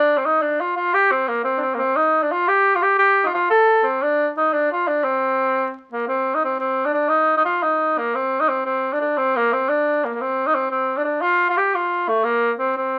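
Celtic folk in a straight 6/8, this short cut from a longer piece moves at 117 dotted-quarter beats per minute in C dorian, with a spirited, driving mood. A lone tenor saxophone carries the whole 13 seconds, playing solo between A3 and A4 with a warm, vintage tone and a classical-style vibrato, placed up front in the mix. The tune falls into two parts, the first phrase running to 6.1 seconds before a second section takes over until the close. The tuning sits slightly sharp, at A4 = 443 Hz. Light reverb surrounds the horn, and the sound carries the crackle and patina of a very old 78 rpm record.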